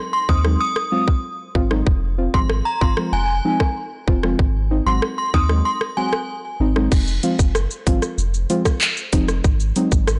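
Dancehall at 95 BPM in F phrygian, sultry and bouncy, this short cut from a longer piece opens with a ringing, inharmonic FM synth chime carrying the melody up front with ensemble chorus, tremolo and delay, sounding until 6.1 s over deep, dark chord stabs softened with chorus and a filter sweep. A punchy sine sub bass with a pitch-drop attack sits up front beside an overdriven electronic island pop kit of tight kick, metallic hi-hats, rim clicks, handclaps, shaker and crash cymbal. Moving between Ab7 and Fm, the groove reaches a break at 5.7 s before a new section arrives at 6.9 s, all in a blown-out, overdriven mix with light reverb and a dull top end.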